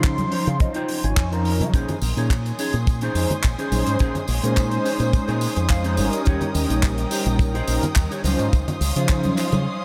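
A dreamy, reverb-soaked mix with a cathedral-like tail opens this groovy, sensual nu-disco excerpt at 106 BPM in Bb dorian, driven by a tight, polished acoustic kick up front and a dry funk kit of handclaps and hi-hat with a lightly swung sixteenth feel, while congas and tambourine ring quietly in the background. A round, punchy fingered bass with an envelope filter pumps against the kick beneath mellow, detuned sawtooth synth brass roughened by vintage sampler grit and delay. A dark, clean electric guitar riff shimmers in lush chorus, and clean electric guitar fills arrive at 0.0 and 5.4 seconds. From 1.7 seconds a smooth, bowed studio violin section sustains lush chords with vibrato over the Dbmaj9 and Eb7 harmony, leading to a break at 9.7 seconds.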